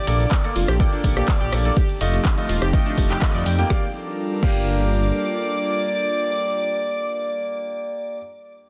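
A straight groove drives this bittersweet, emotional progressive house excerpt: a punchy, up-front electronic kick and a deep house kit with a woody snare and dark hats play beneath a rumbling, detuned saw bass, with grainy maracas until 3.7 seconds and an analog pluck tracing sidechained arpeggios until the drums drop out at 4.6 seconds. Above them, a smooth, expressive portamento lead carries the melody with vibrato and delay, joined by an earthy chamber violin section on a second line, while brilliant baby grand piano stabs with 12-bit sampler grit sound alongside a breathy pad. A very quiet reversed, dreamy texture swells through the opening until 3.7 seconds, all set in a dense, heavily limited modern master with light digital reverb.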